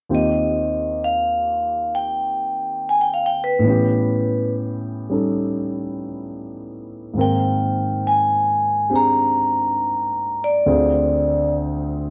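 Ringing, metallic vibraphone struck with medium hard mallets and played with the motor off carries an airy melody up front in this late-night, intimate jazz ballad at 68 BPM with a swung 4/4 feel in Eb major, over a polished concert grand piano whose warm, deep-bass accompaniment moves through Eb69, A9, Abmaj9 and Dm7b5, all captured in a dry, close 1970s-style studio sound with light reverb.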